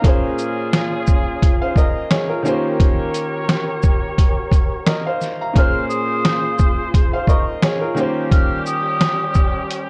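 A swung 87 BPM boom-bap groove in 4/4 drives this tough, moody hip-hop excerpt in Bb dorian, built on a compressed, pitched-down sampler-style kit with a thumpy kick, shaker, hi-hat and snare set up front, while a woody, vintage-toned upright piano with cassette-tape coloring comps through Bbm9 and Eb13, jazz-style horn stabs add delayed vibrato punches, and a breathy flute with rolled-off highs enters at 5.6 seconds to sing an expressive high line, all in a dry room.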